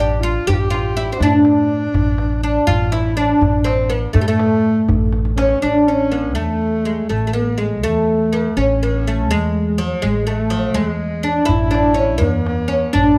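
Dark, lightly reverberant production frames this festive 6/8 Persian modal ensemble excerpt at 82 BPM, where a deep, woody, double-strung fretless oud carries the plectrum-plucked melody up front, a mellow alto saxophone adds a classical-style second line with vibrato, a thumpy pizzicato upright bass anchors the low end, and a tight tombak sits in the background, closing its first stretch with a fill before the mode moves from A shur to A chahargah at 5.6 seconds and returning at 11.5 seconds.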